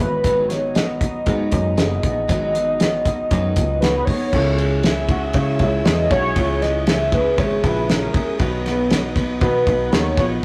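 A velvety, chorused synth lead carries the melody of this restless, bittersweet piece of jangly indie pop at 118 BPM, over a shimmering fingerpicked twelve-string acoustic guitar, twangy arpeggios from an electric guitar through a small old amp with spring reverb, and round picked electric bass; an up-front, cloth-damped thuddy drum kit with a fat snare and dark cymbals joins at 0.2 seconds, and a very quiet, lush string section adds sustained chords from 4.3 seconds as the harmony moves from B to C#m and G#m, heard through a rough rehearsal-room recording with tube saturation.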